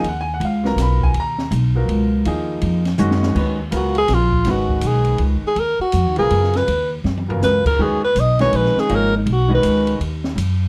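Modal jazz excerpt in G# dorian at a swinging 163 BPM in 3/4, spiritual and intense, where an intimate baby grand piano with audible action noise accompanies on a G#m11 chord and a woody pizzicato upright bass sits up front, while an open studio drum kit with dark cymbals, a high-tuned snare and a boomy kick plays fills at 3.0 and 7.0 seconds, and a breathy alto saxophone enters at 3.8 seconds for a present, vibrato-laden solo full of subtone and scooped notes, set in a warm production with light reverb.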